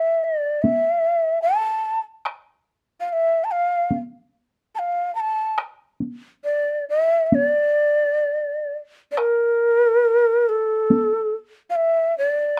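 Unfolding in a free, rubato 4/4, this meditative and austere fragment of Japanese traditional chamber music places a breathy, mellow bamboo shakuhachi up front, its crisp attacks marked by chiff, vibrato and rolled-off highs as it carries the melody through to 12.6 seconds, while a close taiko ensemble struck with hard sticks enters at 0.6 seconds and falls away at 11.1 seconds, the two set in light reverb and caught by close, detailed microphones.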